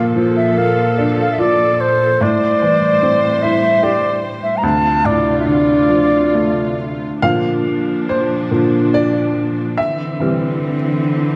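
A mournful, longing Celtic slow air in a rubato 3/4 opens with a pure, woody baroque flute carrying the melody up front with expressive vibrato, a crisp attack and a slapback echo, over a boxy, short-sustained upright piano and a dark, veiled, con sordino string section holding close bowed chords, all set in a moderate recital hall reverb, until the flute falls silent at 6.8 seconds and the piano takes a solo from 7.2 seconds to the cut at 11.4 seconds.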